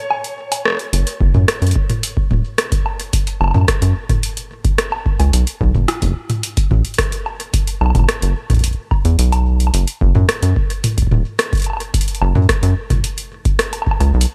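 Glitchy and cerebral, this IDM excerpt at 109 BPM in F# dorian opens with a reversed, dreamy texture swelling in the background with its own reverb for the first 0.9 seconds, joined almost at once by a booming analog drum machine with metallic hats, rim clicks, toms and woodblock through digital delay. A rubbery, hollow square bass then enters up front, followed shortly by a deep, tape-warm electronic kick, all in a dry, close sound.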